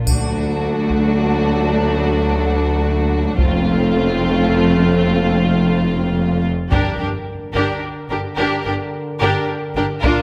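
Epic orchestral film score in G minor at 108 BPM in 3/4, dramatic and relentless, where close, dry taiko drums struck with heavy sticks drive beneath a distant, lush violin melody, a focused second violin line, expressive violas with portamento in the background, and mellow sustained French horn chords. Rich, smooth cellos and double basses anchor the bass as the harmony moves from D to F and then to G minor. A bright triangle rings only in the opening second, and round, soft-mallet timpani sound briefly between 6.7 and 7.5 s, all within a moderate concert hall reverb.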